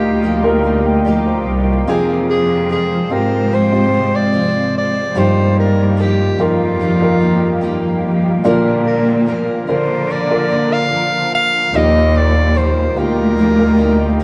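A warm, subtoned alto saxophone carries the melody up front in this heartfelt, emotional pop piece at 73 BPM in Eb major, cut from a longer work, over a lush, bowed cello section that holds the bass close and prominent. A concert grand piano with deep bass accompanies and opens with a fill from 0.2 to 1.9 seconds, while a full-bodied picked dreadnought guitar plays arpeggios and a shimmering, ethereal pad with chorus and its own reverb sustains chords in the background. The chords move from Ebadd9 through Fm and Bb, with the band playing live in a moderate stone room and a vinyl crackle.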